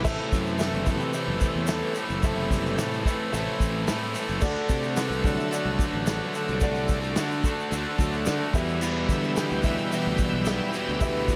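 A light small-room reverb frames this driving, brooding classic rock excerpt, where a growly, punchy fuzz bass and a dark, tight vintage drum kit push two picked overdriven guitar riffs, one raw and tucked into the background, over Am, D and Em, while a shouting tonewheel organ with key click and slow rotary speaker holds chords alongside a woody upright piano and a grainy tube shaker, and a very quiet double-tracked crunchy guitar joins at 8.8 s.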